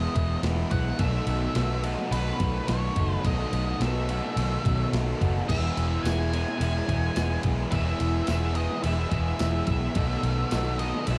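A hazy, lightly reverberant home cassette recording carries this wistful shoegaze and dream pop passage, cut from a longer piece, as an octave-fuzz lead guitar sings its melody through tape echo over a thick bed of overdriven guitars: a crunchy, bright one with reverse reverb, a hollow-bodied semi-hollow with subtle chorus, and a very quiet, double-tracked biting one. Up front, a dark, round and punchy foam-muted fingered electric bass with transformer saturation anchors the Emaj7 and B7sus4 changes, while a clean 12-bit drum machine enters at 0.2 seconds with a thumpy kick, medium-tuned snare, crash and ride, re-recorded in a small room. A jingly, close tambourine sits in the background from 6.1 to 10.7 seconds.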